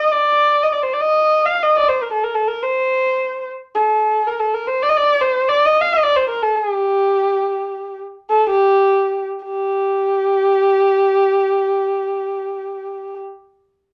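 A dark, up-front solo kamancheh carries this melancholic, soulful fragment of a Turkish makam piece in free time and makam ussak on G, its bowed line moving between G4 and F5 with soft attacks, expressive vibrato, gliding portamento and a smooth top, easing into a slowdown from 4.8 to 9.4 seconds before a new section begins, all set in a modest small-room reverb.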